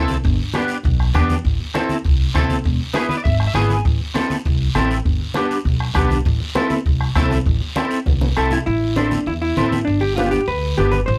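Close, detailed microphones and a touch of light reverb give this fiery, passionate cumbia a present, intimate sound, cut from a longer piece in A minor at a brisk 199 BPM with a straight 4/4 feel. A bright, clean electric guitar sits up front with an ensemble chorus, picking the accompaniment over a G, Am and E progression and slipping in a short fill around 3.0 seconds. Beneath it, a woody, growly upright bass with steel strings plays pizzicato, while low-tuned, damped congas with a thin-skinned snap and a raspy guiro add compressed, saturated texture. A bombo struck with a soft beater, heard in a small room, drives the pulse until a drum fill closes the first section at 8.7 seconds. Just before the second section begins, a dark, hollow-body jazz guitar enters at 8.4 seconds up front, carrying a picked, clean melody to the end.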